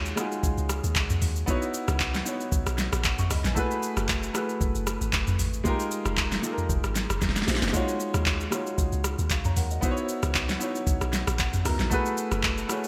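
A dark, mellow grand piano and a deep, round log drum bass open this short amapiano cut from a longer piece, setting a soulful, deep mood at 115 BPM with a gentle 16th-note swing. The piano sits up front with long sustain and a subtle chorus, moving through minor eleventh chords from Ebm11 to Dbm11, Gbm11 and Fm11 before the cycle returns. Beneath it, the FM log drum bass hits with a fast attack and a noise layer, decaying in a shadowy low register. The electronic R&B kit, also up front, brings a knocking kick, fat snare, metallic hats, handclaps, rim clicks, shaker and toms, all given a tape-warm, small-room character and a gated reverb. A drum fill arrives at 7.2 seconds, and the piano adds its own fill at 11.1 seconds. Light reverb and a bright, 1980s-style digital sheen frame the whole track.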